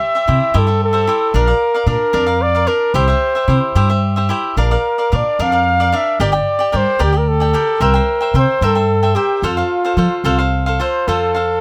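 In 6/8, this festive, romantic mariachi excerpt sets a mellow trumpet singing the classical-style solo melody with light vibrato over crisp, bright picked cavaquinho, while a dark, woody pizzicato upright bass joins at 0.3 s, all three sitting up front in a close, dry, detailed sound as the chords move toward a closing F.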